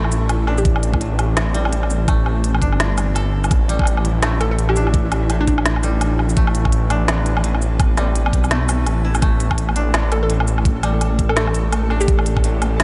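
A rumbling, detuned saw bass sits up front in this tense, dark half-time drum and bass excerpt, joined by a knocking electronic kick from 0.7 seconds, a woody, tape-warm organic kit of snare, crisp hats, shaker and woodblock, mellow koto arpeggios through analog delay, a grainy, flickering texture with lush chorus in the background, and a hollow, bouncy square pluck melody with tape echo surfacing briefly from 0.6 seconds, all in a light digital ambience.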